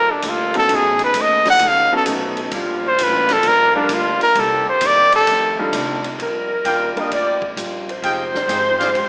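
Big band swing, joyful and energetic, in which a clear trumpet carries the melody up front over distant, roomy saxophone chords, a dark, boxy fingerpicked acoustic guitar, a woody, growly upright bass, a punchy drum kit and an intimate baby grand piano with audible action noise, until at 6.2 seconds the saxophone section takes over the tune with vibrato and, from 6.6 seconds, a tight trumpet section adds soft-attack stabs, all in a recital hall's moderate reverb through a small-speaker sound.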